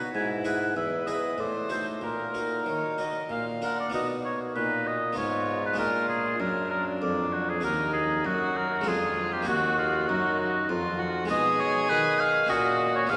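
Grave and solemn, this fragment of a baroque-style sonata movement in triple time places an up-front, vintage-toned oboe with light vibrato on the melody above a distant, nasal gut-string violin on the second line, while a mellow solo bassoon holds the bass and a round, plucked Flemish-style harpsichord fills out the continuo, all set in the long, wet wash of a cathedral.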